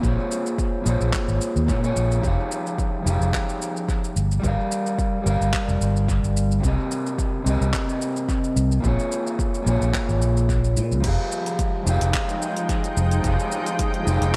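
Smooth and relaxed, this sunset chillout excerpt in F minor moves at 109 BPM with a light swing, pairing a dark, slightly broken-up electric guitar with 12-bit sampler grit and tape echo alongside a growly, up-front fingered bass, an overdriven deep house kit of crash, handclaps, hi-hat and shaker with dub echo over a deep overdriven electronic kick, all in an echo-heavy mix with light digital ambience, before a shimmering, ethereal pad with chorus and slow attack arrives at 11.7 seconds over the return of the Fm9 chord.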